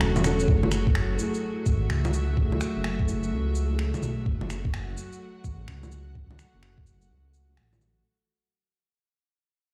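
A deep, rumbling detuned saw bass with tube saturation pumps beneath bowed chamber strings carrying a gritty 12-bit sampler edge, while a woody upright piano with audible action noise plays only until 4.3 seconds and a soft electronic kick sits alongside tape-warm finger snaps, bongos and shaker through this ghostly, melancholic future garage fragment on an F#m7 chord, fading out from 0.5 seconds in a bare room's large reverb with vinyl crackle.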